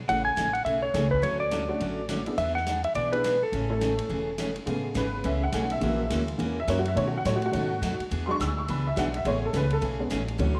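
Down-home and swinging, this country western swing excerpt at 210 BPM in A major sets a dark, clean, compressed lap steel melody over a thumpy pizzicato upright bass, a bright dreadnought acoustic guitar, a big-room swinging drum kit and a jangly, detuned honky-tonk upright piano that takes a solo from 4.7 s once the steel stops at 4.5 s, heard through a moderate echo chamber reverb.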